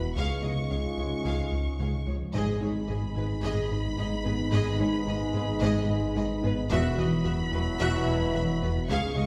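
Drenched in the long, wet reverb of a recital hall, this tense, futuristic fragment of a hybrid orchestral and electronic film score blends a lush, vibrato-rich violin section carrying the high melody with a second, smooth-topped violin line, a background viola section and very quiet, distant cello and woody double bass sections. Vintage-toned trombones and mellow French horns hold sustained chords, while a soft, ringing harp-like synth pluck with chorus and a filter sweep spins very quiet arpeggios over a faint, dark baby grand piano. In the background, a rubbery, hollow square-wave bass riff sits above a deep, rumbling detuned saw bass with saturated, beating grit, as the harmony moves from C# to G# minor at 2.3 s and settles on Esus2.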